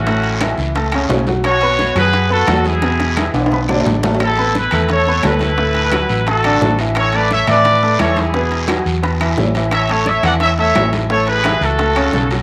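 Festive and sunny, this salsa excerpt at 174 BPM in A major puts a tight, brilliant horn section with vintage vibrato up front on the melody, over a dark, round hollow-body electric bass and a bright, worn, slightly detuned upright piano with audible action noise, while very quiet low-tuned bongos, hard-hand congas and woody claves join a raspy guiro and distant metal-shell timbales in a moderate echo chamber, with a drum fill from 2.8 to 4.2 seconds.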